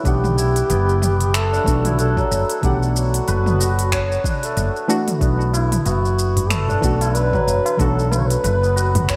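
Soaked in plate reverb for a dreamy haze, this mystical, earthy organic downtempo excerpt sets a mellow, folk-style duduk melody with vibrato over shimmering hammered santur arpeggios, a deep, warbling detuned chord stab with chorus and sidechain pumping, and an up-front woody fretless bass, while an overdriven soft electronic kick and a kit of finger snaps, crisp hi-hats, shaker and toms carry a swung groove throughout, joined at 5.5 seconds by a high-tuned, close and dry tabla in the background.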